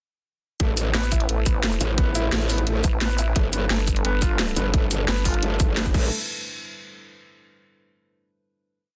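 A tight, overdriven electronic kick and an up-front drum and bass kit with a cracking snare, bright hats, shaker and crash drive this aggressive, futuristic dark technical drum and bass piece at 174 BPM in A minor, where from 0.6 s a saturated, growling bass and a nasal vowel-sweep wobble bass, entering at 0.9 s to answer it, weave modulated phrases with changing wobble speed over Am and G chords, a moody, detuned analog pad pumping in the background, and a soft felt-muted upright piano repeating a 6-step arpeggio loop through digital delay that drifts against the bar, until the drop gives way to a final hit at 6.1 s.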